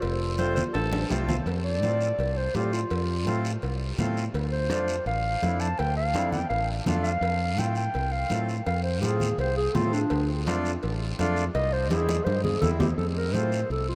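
A straight four-beat cumbia groove rolls along on ringing, hard-handed congas in the background, a raspy guiro, very quiet metal-shelled cowbell and timbales, and a round, punchy fingered electric bass up front, with drum fills near the start and in the closing bars of this joyful, sunny Latin excerpt. A dark, smooth-topped clarinet carries the melody and takes a classical-style solo from 1.5 to 13.0 seconds over a reedy, boxy accordion, while a breathy alto saxophone with light vibrato adds a distant second line only briefly near the opening. A huge ambient reverb places the music in a vast, echoing space as the chords move between F, D minor and C.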